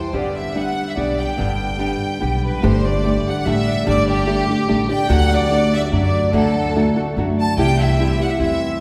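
Bathed in the long, wet reverb of a church or concert hall, this romantic, proud mariachi excerpt in 3/4 sets a clear, smooth violin section up front, singing the melody with vibrato over small fingerpicked nylon-string guitar and woody, thumpy pizzicato upright bass on gut strings, before a ringing Celtic harp joins with arpeggios at 2.6 seconds as the chords move from G to Gsus2, D and C.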